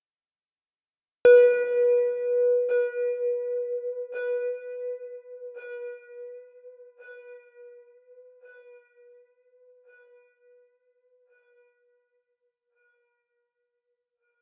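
A lone, soft FM synth bell sounds at Cb5 from 1.2 to 8.3 s in this luminous, peaceful ambient excerpt in free time, tuned to A4 = 436 Hz. The bell is pure and vintage in tone, with a fast attack and long release, and it sits up front, treated with chorus and a diffuse ambient delay. A wet concert-hall reverb with a 2.5 s decay surrounds it, while a worn cassette-tape character lends a gentle, warbling pitch drift.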